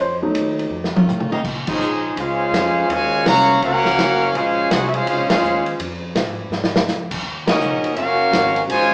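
Sultry and dramatic, this big band swing piece moves at 166 BPM in Bb minor, opening with an intimate concert grand piano whose action noise is audible, over woody pizzicato upright bass and a vintage drum kit with dark cymbals, a tight kick and short fills. A saxophone section briefly holds sustained chords with vibrato before, at 1.7 seconds, an up-front, bright trumpet section takes the melody with light vibrato while a brilliant, close-miked trombone section carries a second line beneath it, punctuated by band accents. The band sounds live in one room, wrapped in a wet large studio reverb yet heard as if through a small speaker.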